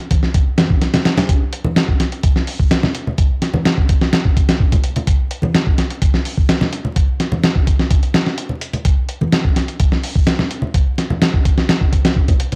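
A gritty, compressed, sampler-style soul drum kit with a thumpy kick, medium-tuned snare and hi-hat sits up front with a cassette-tape haze and the air of a large room, driving this swaggering, funky 127 BPM breakbeat in straight 4/4, while thick-skinned acoustic congas play quieter underneath from 0.1 s to 12.6 s, all of it caught dry in a home cassette recording flecked with vinyl crackle and cut from a longer piece.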